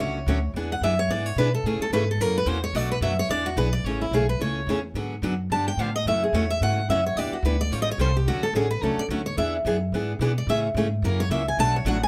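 A lively, swinging excerpt of acoustic string swing in A major at 217 BPM, where a picked steel-string acoustic guitar takes a bright solo melody with audible finger squeak over a second picked steel-string guitar playing accompaniment with fresh-stringed sparkle. An upright bass played pizzicato on gut strings adds a woody, thumpy low end, all three parts sitting up front in light reverb. The harmony moves through rich jazz changes such as Dmaj7, G#m7b5, G9 and A7alt across two passes of the same section, the second beginning at 3.8 seconds.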